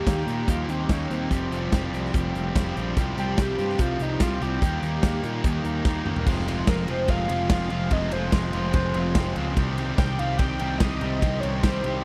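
A screaming, gritty synth lead with a guitar-like edge carries the melody from the opening second, its saturated tone colored by phaser and tape echo and shaded with vibrato. Beneath it, a bright, compressed electric guitar with lush chorus and a sludgy distorted guitar play riffs in this cool, moody indie rock excerpt cut from a longer piece. A fuzz-soaked picked bass and a big, up-front rock kit with a punchy kick and bright cymbals drive the straight 4/4 pulse. From 3.7 seconds, a very quiet, airy, breathy pad enters with slow-attack sustained chords. A drum fill at 5.9 seconds leads into a second section built on Fm7 and Cm, and the dry, close small-room sound gives the whole band a 1970s studio feel.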